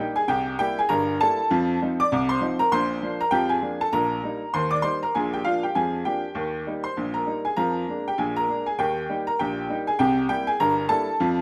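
A jaunty, playful solo upright piano plays a short ragtime passage cut from a longer piece, its clear, woody, slightly detuned tone sitting up front with long sustain in an echo-chamber reverb, swinging lightly in two as it moves from C7 through F7 and Bb7 to settle on Eb before turning back to C7 at 10.0 seconds.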